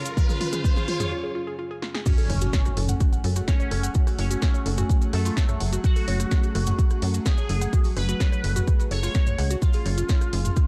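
A straight 4/4 pulse of up-front electronic kick drum, a punchy analog drum machine with tape-warm snare and grainy cabasa drives this cinematic, hypnotic melodic techno excerpt, where a resonant, detuned polysynth melody through phaser and analog delay, dark woody wave-folded pluck arpeggios with tape echo, a very quiet morphing wavetable pad and a soft, breathy background pad sit together from the start, a drum fill and background riser build into a short break, and the drop at 2.1 s lands with an electronic impact before a tight, ring-modulated sequencer bass enters at 2.3 s, sharing sidechain pumping with the lead, pluck and breathy pad in a dry, gritty cassette-tape sound.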